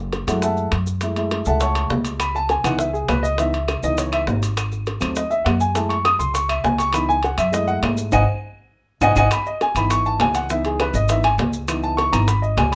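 A dark, mellow grand piano leads this fiery, sophisticated Afro-Cuban jazz excerpt at 202 BPM in C# minor, soloing throughout over chords such as F#m7, C#m7 and G#7b9. Pizzicato upright bass with thumpy gut strings sits up front, while tight, high-tuned bongos, ringing metal-shell timbales and grainy maracas drive the straight 4/4 groove, joined at 2.2 seconds by woody, distant claves in the background. The band hits an accent at 8.1 seconds, with a drum fill leading into a return of the opening section at 9.3 seconds, inside a moderate club reverb.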